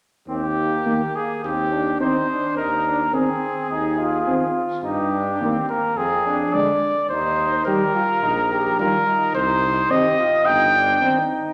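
Bathed in a recital hall's reverberant glow, this noble, triumphant classical brass quintet excerpt in Eb major moves with a rubato feel at 106 BPM, as a present trumpet with light vibrato carries the melody up front over a distant, roomy flugelhorn second line, while a smooth-topped French horn and a dark trombone in the background fill in the accompaniment from 0.9 seconds and a clear, soft-attacked bass trombone with a vintage tone anchors the bass, the harmony settling on C minor at 9.3 seconds.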